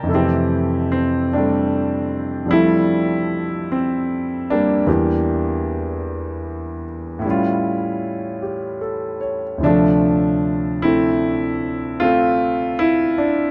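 A clear concert grand piano plays entirely alone from 0.0 to 13.5 seconds in this tender, romantic jazz ballad, cut from a longer piece. The tempo is a slow 51 BPM in 4/4, with a gentle swing on the eighth notes that keeps the unhurried pulse relaxed. Set in F major, the piano ranges from a deep bass low D up to a high B-flat, moving through a lush progression of Fmaj9, Em7b5, A7b13 and Dm9. The instrument sits up front with a natural tone, captured by close, detailed microphones in a dry space with little reverb. The result feels intimate and quietly romantic, as though the listener is seated beside the keyboard.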